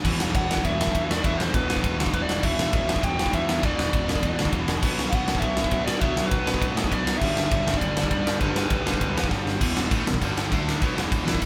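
Punk rock at 201 BPM in E minor, urgent and aggressive, in which a bright distorted electric guitar and two overdriven electric guitars (one compressed, one double-tracked) churn out riffs beneath a growling, overdriven picked bass, a big acoustic rock kit with bright cymbals, a medium-tuned snare and a punchy kick sits up front, and a biting lead guitar carries the melody from 0.4 to 9.3 seconds before a drum fill pushes into a new section at 9.6 seconds, all played live in one room with light reverb.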